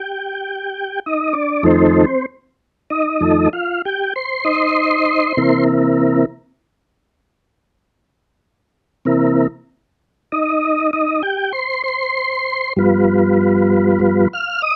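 A slow 12/8 blues swaying in dotted-quarter beats, this short excerpt cut from a longer piece has a gritty, rollicking mood despite its unhurried pace. A lone tonewheel organ carries the whole passage, playing sustained chords that reach from its low register up into its upper register. Its sound is smooth and clean, coloured by chorus vibrato and a slowly turning rotary speaker, and it sits up front in the mix. The harmony moves from F7 to C7 at 5.4 seconds and arrives on G7 at 12.8 seconds. The dry, close recording has the feel of a 1970s studio, with just a touch of light reverb around the organ.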